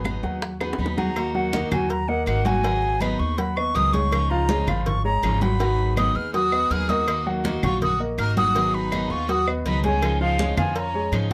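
Sultry and warm, this excerpt of Cuban son and guajira moves at 162 BPM in 4/4, cycling through Abm7, Ebm and Dbadd9 over a dark, thumpy pizzicato upright bass up front, a full-bodied picked steel-string guitar and concert grand piano arpeggios with deep bass and short sustain. Thick-skinned congas and woody claves sit in the background, while tight, high-tuned bongos and cowbell stay close and dry. A drum fill runs from 0.6 s to 1.2 s as the airy, crisp-attacked silver flute melody enters at 0.8 s from a distance. At 6.3 s a clear, earthy bowed violin section adds a second line low in the mix, with light vibrato, in a close, detailed sound with light reverb.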